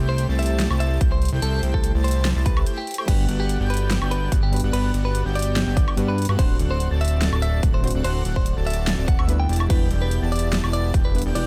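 Playful and lush, this future bass excerpt at 145 BPM in G major rides a swung half-time feel. A fat, detuned analog bass sits up front under a smooth, mellow supersaw riff, a clean picked electric guitar melody with tape echo, and an airy, dreamy lead arpeggiating in the background, all pumping to the sidechain. A punchy overdriven kick and a big-room kit with a huge snare drive the groove, while a soft, round pluck joins at 3.1 seconds after a brief break as the chords move from C6 through Gmaj7 and D7 to Em7 in a digital ambience.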